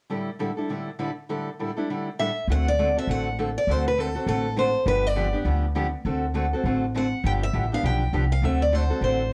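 A worn, warbling old-tape sound with cassette pitch drift and light reverb frames this short, swinging cut from a longer piece of acoustic string swing in D mixolydian at 202 BPM. A bright, boxy parlour guitar with audible finger squeak opens the accompaniment at 0.1 seconds over an A7sus4, and a warm concert guitar picks up the melody at 2.2 seconds. From 2.5 seconds a woody, thumpy upright bass with dark gut strings joins up front as the chords move between D7 and G7, keeping the mood playful.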